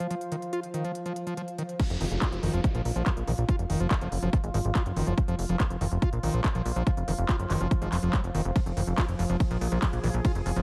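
A squelchy, distorted acid bass riff with tape echo and sidechain pumping runs through this driving, hypnotic psychedelic trance excerpt at 142 BPM in F phrygian. It plays alongside a detuned, morphing wavetable pad with phaser and a techno kit of crash, ride, handclaps and smooth hi-hats, while a nostalgic, lo-fi tape-like pad with chorus sits in the background until 1.8 seconds. At the drop at 1.8 seconds, a heavy, overdriven electronic kick comes up front, joined at 1.9 seconds by a punchy, funky plucky analog bass, with a downlifter in the background, all set in a digital ambience.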